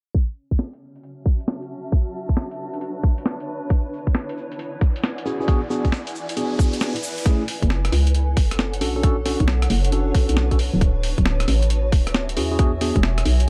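A soulful, bouncy two-step garage cut from a longer piece opens with a tight, up-front electronic kick and a gritty, tape-coloured sampler-style kit of hi-hat, rim click and snare, swung on the sixteenths under a dark, low-passed production with a filter sweep running through the first half. A cloudy, detuned granular pad drifts in at 0.9 seconds, blurred by its own reverb and pumping with sidechain compression as it moves through minor-seventh and ninth colours. A grainy, vintage egg shaker and an electronic riser build toward a short break, and a mellow tine electric piano begins its stabs at 5.3 seconds, trailed by dub echo. After the break, a hollow, knocking FM bass lands at 7.6 seconds, punchy and decaying, pumping in the same way as the pad. The second half cycles the chords again, closing on an E7 as the bass, pad and sampler-style kit carry on to the end.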